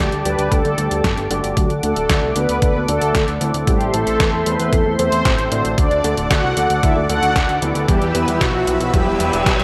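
A moderate plate reverb gives this sunny, danceable italo disco excerpt at 114 BPM a polished sheen, with a round, brassy synth carrying the melody through chorus and tape echo over a smooth, detuned analog pad holding sustained chords from Gsus2 through D, Am and Em. Underneath, a fat, saturated analog bass drives the low end, while a dark baby grand piano adds mellow, gritty stabs in the background and takes on a filter sweep from 1.6 seconds. A thumpy electronic kick enters at 0.5 seconds beside a detuned 8-bit drum machine's hi-hat and medium-tuned snare with gated reverb, and a very quiet riser leads into a reverse cymbal at 8.9 seconds.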